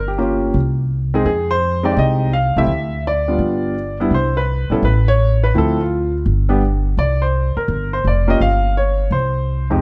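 Dark, warm production with light reverb sets a smoky mood for this swinging jazz fragment in C minor at 168 BPM, cut from a longer piece. A clear concert grand piano carries the melody up front across the full 9.8 seconds, its deep low register and audible action noise giving it a natural, intimate presence. A woody, thumpy upright bass, played pizzicato on steel strings, sits just as close beneath it, moving through Fm7, G7 and Dm7 before settling onto open C5 sonorities near the close.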